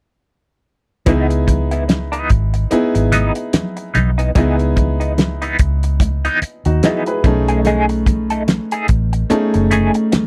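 A dry, close recording with little reverb frames this short cut from a lush 1970s-style soul piece, silky and bittersweet in mood, moving at a slow, swung pace over a C#m9 chord that shifts to B13 at 7.2 seconds. A cloth-damped kit with a fat snare and tight kick sits up front beside a dark, foam-muted fingered bass, while a clear concert grand piano with short sustain and a boxy tone plays accompaniment. A clean semi-hollow electric guitar carries the riff through wah and tremolo, and bright, thin-skinned congas add soft-handed percussion in the background.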